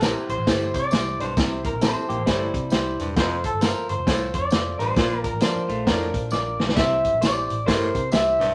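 A swung 4/4 groove at 133 BPM drives this uplifting, joyful slice of uptempo 1960s-style soul, built on a vintage drum kit with a punchy kick sitting up front, a round, dark, foam-muted picked electric bass, an intimate grand piano with audible action noise, and a jingly tambourine in the background. A bright, twangy electric guitar through a small old amp carries the melody, slightly broken up, while a gritty, close-miked baritone saxophone enters with a riff at 0.5 s and a scooped semi-hollow guitar adds another riff through spring reverb from 1.8 s. The chords move from C through F and Bb, and a drum fill at 6.3 s leads back to C, all framed by a moderate studio reverb.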